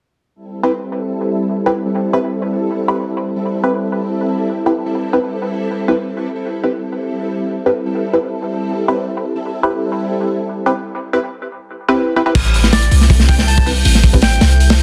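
Set in a light, small-room ambience with a dense, heavily limited modern master, this atmospheric, raw drum and bass and jungle excerpt in A minor at 160 BPM opens on a silky string machine holding an Am7 chord under muted, filter-swept dub chord stabs coloured by chorus, phaser, cassette tape and dub echo. At 12.3 seconds a crunchy, saturated breakbeat kit arrives up front with dark cymbals and a tight kick, joined by a deep, boomy 808-style bass. A reversed, dreamy swelling texture sits in the background while a reedy, breathy melodica enters at 12.7 seconds, trailed by its own dub echo.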